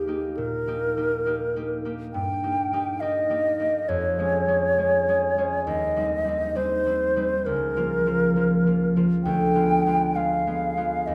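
A rubato pulse at 67 BPM in 4/4 sets a serene, warm mood for this short classical excerpt, a romantic duo for flute and harp lasting about 11.1 seconds. The silver concert flute carries the melody up front, its pure, hollow tone shaped by vibrato and tongued notes between G4 and G5, while the concert harp supplies a fingerpicked, ringing accompaniment reaching down to Db2. A wet recital hall reverb surrounds both as the harmony drifts from Eb through Db/F and Bbm/Db before arriving at a Ddim7 chord.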